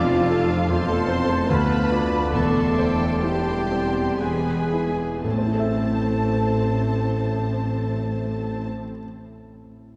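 In a rubato triple metre that slows through its first 5.2 seconds, this tragic, passionate romantic movement for piano and orchestra sets an intimate grand piano melody, its action noise audible, against a smooth studio violin section that also carries the tune in the background, while a focused symphonic violin section, dark solo clarinet, airy flute section and soft-edged oboe weave second lines. Beneath them, an intense viola section accompanies, a mellow French horn section holds sustained chords, and a double bass section, faint tuba and distant cello section anchor the bass, with very quiet hard-mallet timpani entering at 2.3 seconds. The orchestra stops at 8.7 seconds, leaving the piano to finish alone, all of it bathed in a long, wet church reverb.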